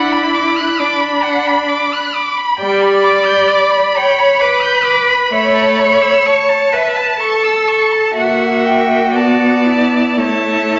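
Elegiac and solemn, this slow romantic movement for string quartet moves in 3/4 at 56-67 BPM with a rubato feel, a passage cut from a longer piece. One violin carries the melody with a smooth, even tone and vibrato. A second violin sounds distant and expressive, its rich second line shaded with portamento. The viola sits close and up front with vibrato as accompaniment, while a clear, focused cello, also up front and the strongest voice, supplies the bass. All four bowed players sound together from 0.0 to 10.8 s, passing through Bm/D, G and A before F#7/A# and Bm7 lead back to A. A wet recital hall reverb surrounds the ensemble, and the sound holds nothing above 7.9 kHz.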